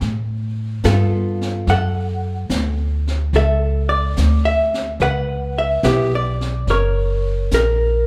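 Intimate and smoky, this short excerpt from a longer jazz ballad moves at an unhurried swing in four. A clean, dark hollow-body electric guitar sits up front with picked, compressed chords, while a woody, thumpy upright bass on gut strings plays pizzicato just as close to the listener. Further back, a brushed drum kit with a high-tuned snare and hi-hat sounds distant and roomy, its top rolled off to a soft glow. All three play throughout the 8.1 seconds, moving through a progression that opens on a rootless C#7b13 and settles on F# near the end. The band plays live together in one room, and a moderate large studio reverb gives the whole performance a gentle sense of space.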